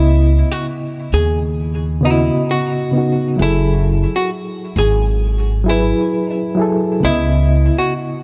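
A slow, swung hip hop groove in 4/4 sets a melancholic, hazy mood across this short fragment cut from a longer piece. Up front, a pizzicato upright bass with steel strings gives a woody, acoustic low end that holds until 7.7 seconds. A reed electric piano carries the accompaniment with a reedy, clean tone, its fast tremolo and cassette tape colouring adding a worn, wavering texture as it moves through C#m9 and F#m9 chords before returning to C#m9 at 7.0 seconds. Sitting further back, a dark, hollow-body archtop guitar plays a picked melody in a narrow range, its clean electric sound trailing off through dub echo. Light reverb and a small room ambience give the echo-heavy mix an intimate, hazy feel.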